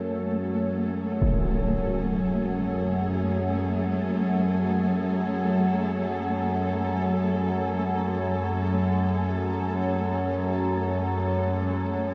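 Unfolding in free time, this desolate, ominous dark ambient drone, cut from a longer piece, pairs a resonant, overtone-sweeping sawtooth-and-sine drone up front under chorus and phaser with a lush, woody bowed cello section holding sustained chords with vibrato as it fades in across the full 12.1 seconds, while a grainy, flickering granular texture sits in the background and a huge, bright impact strikes at 1.2 seconds, inside a cavernous cathedral reverb.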